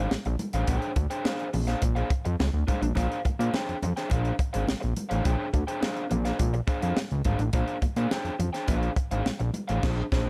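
A straight, strutting funk groove in 4/4 rides on a tight, dry acoustic drum kit, with its high-tuned snare, tight kick, hi-hat and crash sitting up front, while very quiet congas with bright, damped skins and hard hands add color from the small room. A fat, thick sawtooth bass with a detuned edge and a filter sweep anchors the low end, and a crunchy, overdriven electric guitar picks out accompaniment over a Bb9 harmony. The dark, warm production keeps the cut snippet funky and strutting until the band hits an accent at 9.8 seconds.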